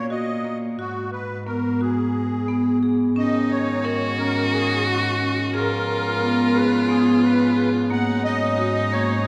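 Close-miked, dry marimba with medium hard mallets stands out, playing full arpeggios through this restless, pensive fragment of contemporary chamber music in 7/8 at 177 BPM. A shimmering, reedy musette accordion carries the melody over a soft, floating bowed cello bass, and at 3.2 seconds a rich viola with vibrato adds a smooth second line while a mellow, breathing pedal harmonium sustains chords in the background. The recording sits in a wet church reverb, with the harmony moving from F#/A# and G#m7 to chords over a G# bass.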